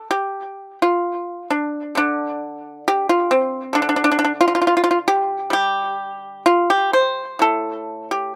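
A solo pipa opens this short, flowing piece of Chinese traditional music and carries it alone from start to finish over about 8.4 seconds. Its tone is bright and percussive, played with fingerpicks and placed up front, spanning a range from A2 to C5. The mood is serene. The pulse sits around 66 BPM in 2/4, but the beats are uneven and the rubato feel lets the phrasing breathe freely within the G shang mode. Recorded outdoors with little reverb, the dry sound keeps every plucked note close and clear, as this fragment of a longer piece unfolds as a single continuous section.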